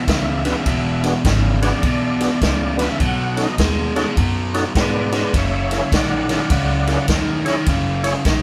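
A band playing live in one room comes across with a moderate studio reverb, giving this short cut from a longer electric blues shuffle a gritty, soulful character. A biting, overdriven guitar sits up front with a low, picked riff, while an upright bass plucks a woody, dark line beneath it. The vintage drum kit sounds natural and acoustic, with a punchy kick, a medium-tuned snare, ride cymbal and a rolled-off top, also placed up front. A percussive tonewheel organ fills in the accompaniment with a full, lightly overdriven tone, a slow rotary speaker and chorus vibrato, dropping out at 8.1 s just before the others finish. The swung eighths give the groove a loping bounce as the harmony moves from E7 to B7 at 3.0 s and on to F#7.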